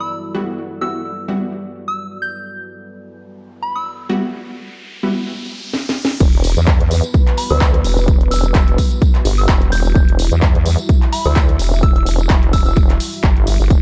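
Bouncy and swaggering, this bass house excerpt opens on a dark, moody analog pad under a soft, pure FM bell melody with tape echo, a faint warbling lo-fi pad and bold, detuned orchestra-hit-like stabs, before an electronic riser and a drum fill lead into the drop at 6.2 seconds. There a nasal, resonant vowel-sweep wobble bass with sidechain pumping takes the front alongside a punchy, overdriven kick, while the house kit adds a cracking snare, handclaps, hi-hat and crash, and a jingly tambourine sits in the background. The bell returns over the drop, and the dark pad sustains through the whole passage.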